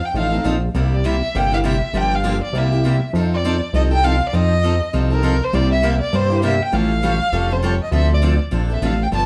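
This short excerpt sits in a lively studio room with a moist reverb, heard from a little way back, giving the whole a gently blended sense of space. It is playful, charming acoustic string swing in the jazz manouche style, moving at 200 BPM in 4/4 with a lilting swung feel in C mixolydian. An expressive bowed violin carries the melody from the first moment, its tone smooth on top, colored by vibrato and portamento and bathed in plate reverb. Underneath, a fat, thick analog bass with a detuned sawtooth edge, wave-folded bite and a filter sweep sits up front with a fast attack and sustained notes, entering at 0.1 seconds. A bright, boxy parlour-style steel-string acoustic guitar joins at 0.2 seconds with picked accompaniment, its fresh strings letting finger squeaks through. The harmony moves through F7, C7, Gm7, an Aaug7 and lands on Dm7 before the cut at 9.3 seconds.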